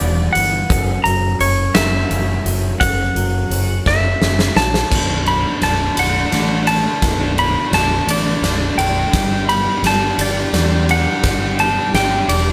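Post-rock in a slow, cathartic and melancholic 6/8, where a bright, compressed lap steel sings the slide melody over background arpeggios from a scooped, twangy guitar and a growling overdriven fingered bass, a huge arena drum kit with punchy kick and pumping room sound joins at 0.4 seconds and fills into 4.9 seconds, when a sludgy, dark distorted guitar riff enters and the band builds through Bm7 to Gmaj7 in a stone room with a live, one-room feel.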